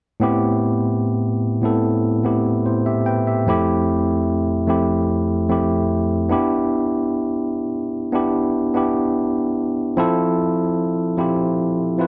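A clean tine electric piano sits up front through its built-in speakers, playing solo from 0.2 to 12.1 seconds in this bittersweet, silky soul fragment, moving through Am9, Fmaj9 and Em7 before settling back on Fmaj9 in a light reverb.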